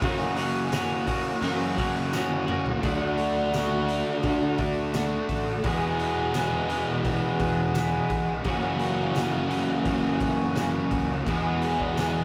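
Shoegaze-tinged dream pop rock at a straight 85 BPM in 4/4, this blissful, hazy excerpt stacks a biting overdriven guitar, a dark, compressed overdriven electric guitar and a very quiet, double-tracked crunchy overdriven guitar on riffs over a growling picked bass, a shimmering, octave-doubled twelve-string acoustic playing arpeggios, a loose indie kit with a fat snare and punchy kick whose fill at 2.1 seconds leads into the next section at 2.8 seconds, and a jingly tambourine in the background from 0.7 seconds, all captured with a rough rehearsal-room feel and tube saturation as the chords move from F#7 through D and E6.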